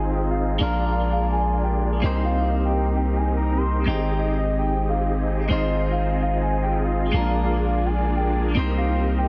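This lush, dreamy future bass passage in C minor opens with all four parts together at 147 BPM in a half-time feel: a deep, sine-toned 808-style bass sits up front with long decaying notes beneath huge, detuned supersaw chords that carry a bright, phased riff through a low-pass filter. Above them, a soft octave-layered synth lead sings a dark, round melody with vibrato, its chorus, phaser, digital delay and vintage 12-bit sampler grit adding haze, while a clean, twangy electric guitar picks a scooped, compressed accompaniment through its own digital delay. Cycling through Fm7/Ab, Bb7, Cm7 and Abmaj7, the whole passage has light reverb and a heavily compressed, radio-like sound.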